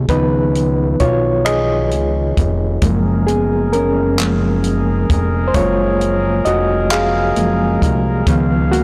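Slow, sensual and tender six-eight R&B at 44 BPM in F# major, this short excerpt features a bright, reedy electric piano with fast tremolo taking the lead up front over a fat, saturated analog bass and a tight, dry cocktail kit of finger snaps, handclaps, hi-hat and kick, while a clear, soft-attack brass ensemble enters at 2.8 s with sustained chords as the harmony moves from C#9 to F#maj9, all in a blown-out, overdriven recording with light reverb.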